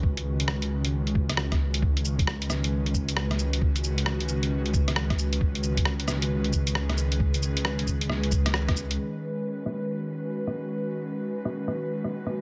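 This excerpt of nocturnal, wistful future garage opens with an airy, breathy pad holding sustained chords over a dark detuned saw bass and a thumpy, pitched-down electronic kick, all moving at 134 BPM in 4/4 with a swung sixteenth-note feel. The pad has a soft, warbling, vintage character with a slow attack and a noise layer, treated with chorus and sidechain pumping, and it sits up front. Beneath it the bass is deep and rumbling, a saturated, beating tone that also carries sidechain pumping. Just after the start, a lo-fi sampler-style kit adds cabasa, hi-hat and rim click, muffled by low-pass filtering and compressed. The harmony rests on G#m/C# until the kick drops out at 8.8 seconds and the bass at 9.0 seconds, leaving the pad and the filtered percussion on a C#5 chord until the cut at 12.4 seconds. Light reverb and a dulled top end give the whole a hazy, late-night softness.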